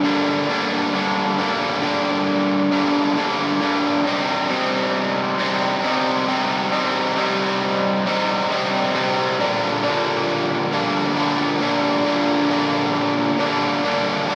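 A lush hall reverb soaks this dreamy, melancholic rock fragment, lending it a cinematic sense of space as it builds over 14.3 seconds in G minor at a slow 45 BPM in 6/8, tuned to A4 = 436 Hz. A lone electric garage guitar sits up front, bright, raw and double-tracked, its picked overdriven tone ranging from G2 to Eb4 and carrying spring reverb and a diffuse ambient delay. The harmony moves from Gm to Cm at 4.1 seconds and settles on Gm/Bb at 9.4 seconds.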